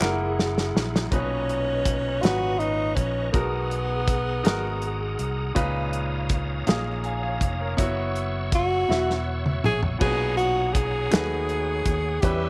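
This slow gospel excerpt in a straight 6/8 feels uplifting and jubilant. A drum fill from the soul kit opens it, and a crisp group handclap sounds in the background. The kit itself sits up front with a tight kick, medium-tuned snare and dark cymbals in a small room. The round, punchy fingered electric bass is also up front, under a brilliant grand piano and a reedy tonewheel organ. The organ holds sustained chords with key click, chorus vibrato and a fast rotary speaker. At 1.1 seconds a breathy tenor saxophone takes the jazz-style solo melody with vibrato and scooped notes, and a second drum fill and another handclap arrive near the end under light reverb.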